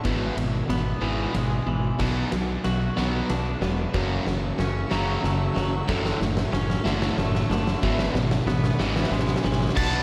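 A crunchy, double-tracked overdriven guitar riff leads this euphoric, soaring post-rock excerpt at 93 BPM in 3/4, driven by a punchy fuzz bass and an oversized, low-tuned drum kit with a fat snare and gritty crash and ride cymbals playing a building fill, while a twangy clean guitar arpeggiates through lush chorus and delay, a very quiet organ-like pad holds detuned chords over E7/G#, Bm7, F#m7 and Dmaj7/F#, an octave-fuzz lead guitar enters on a dark high note at 9.8 s, and the dreamy mix is soaked in cathedral reverb.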